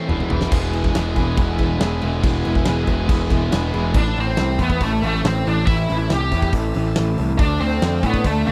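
A dry, close 1970s-style studio sound frames this driving, swaggering classic rock passage in A minor at 140 BPM, where a drum fill opens a huge arena kit with a fat snare and punchy kick under an up-front fuzz bass, a tremolo-shaded overdriven semi-hollow guitar riff, a tight distorted guitar riff that stops at 3.9 seconds and a very quiet, shouting tonewheel organ on slow rotary, before a dark octave-fuzz lead guitar with wah and tape echo takes the melody from 4.0 seconds as the chords move from E to Am and then Dm.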